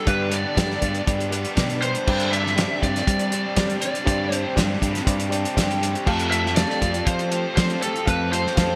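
An open-road, nostalgic folk rock and heartland rock excerpt in straight 4/4 opens with a dark, overdriven lead guitar melody from a small cranked amp over a bright, double-tracked biting riff guitar and a picked steel-string acoustic with analog chorus and finger squeak, joined at 0.1 s by a gritty reed electric piano with fast tremolo, a growly fingered bass and an up-front, cloth-damped thuddy drum kit with a fat snare and gated reverb, moving from G through Csus2/G to Fadd9 at 6.1 s in a bright 1980s-style digital production with light small-room ambience.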